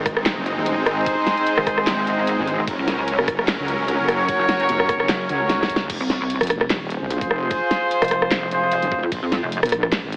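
Heavy wobble dubstep in a half-time feel, this cut from a longer piece feels heavy and chaotic, riding a lightly swung groove. A detuned, saturated wobble bass runs throughout, joined at 1.6 seconds by a second, pulsing sine-based wobble bass that sits up front, both thickened with chorus and overdrive. Huge, lush supersaw chords pump under sidechain in the background until 5.9 seconds, while a mellow brass ensemble with light vibrato plays distant, roomy stabs trailed by tape echo. The dubstep kit hits hard with a huge snare, bright hats, handclaps, rim clicks, ride and crash, supported by a knocking electronic kick, and a drum fill at 5.5 seconds leads into the second drop. The whole mix is crushed into a heavily compressed, AM-radio sound with a touch of reverb, as the harmony moves from Ab and Gb to F minor before closing on Bb5.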